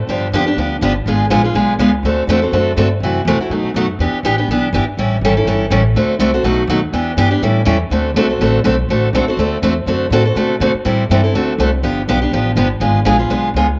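Playful and swinging, this short cut from a longer jazz manouche piece races along at 245 BPM in D mixolydian, with a woody pizzicato upright bass underpinning a picked steel-string acoustic guitar that sits up front with fresh-stringed, warm presence and a cassette-tape tint. The guitar's accompaniment moves through a lively turnaround of G7, G#dim7, D7 and B7 toward Em7 and A7, then settles on a long D7 when the second section begins at 7.9 seconds before heading back through Am7 and G7. A moderate spring reverb and the homespun cassette recording give the duo an intimate, lived-in sound.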